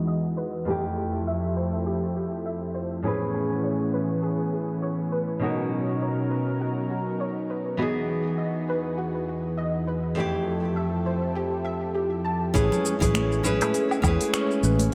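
A fingerpicked nylon-string guitar up front and a lush, warbling, detuned unison pad open this relaxed, smooth sunset chillout excerpt in A lydian at 101 BPM with a swung 16th-note feel, joined almost at once by soft, round pluck arpeggios shaped by a filter sweep and shimmer reverb, before a dark, round fingered electric bass up front, a soft electronic kick, and a tape-warm R&B kit of finger snaps, smooth hi-hat, shaker and woodblock arrive at 12.6 seconds, with bright, hard-handed congas following in the background at 12.7 seconds, inside a dreamy, reverb-soaked mix.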